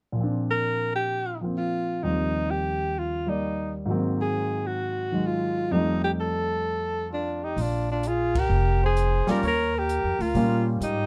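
A present, deep-toned concert grand piano opens this relaxed, playful small-group swing excerpt at 130 BPM in Bb major, joined at 0.5 seconds by a clear, breathy alto saxophone melody with light vibrato, while a dark trumpet with scooped notes adds a second line from 7.1 seconds, and a woody pizzicato upright bass and an airy drum kit with dark cymbals and a boomy kick arrive at 7.6 seconds ahead of a band accent, all set in light reverb within a dark, warm production.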